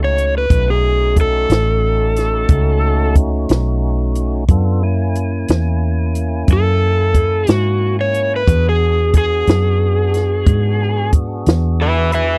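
An overdriven slide guitar sings a dark, swaggering melody over fat tonewheel organ chords turning through a slow rotary speaker and a round, foam-muted electric bass, with a compact cocktail drum kit of punchy kick, high-tuned snare and hi-hat joining at 0.2 seconds in this soulful, dry, close-miked slow blues in 12/8 moving through B9, F#9 and E9, cut from a longer piece.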